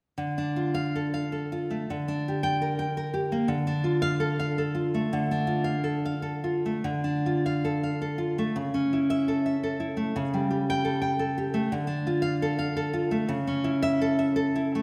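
Heard in a church or concert hall with a wet, lingering reverb, a single nylon-string guitar sits up front in the sound. It is a wistful, melancholic romantic piece for solo classical guitar in D minor, flowing in a rubato 3/4 at roughly 90-120 BPM. The fingerpicked guitar has a full-bodied, deep tone, spanning C#3 to G5, with audible finger squeak. The opening section moves from Dm to Gm over D and back to Dm. From 6.9 s the second section turns to A over C# and A7 over C#, returns to Dm, and closes on A over C# as this passage, cut from a longer piece, ends at 14.8 s.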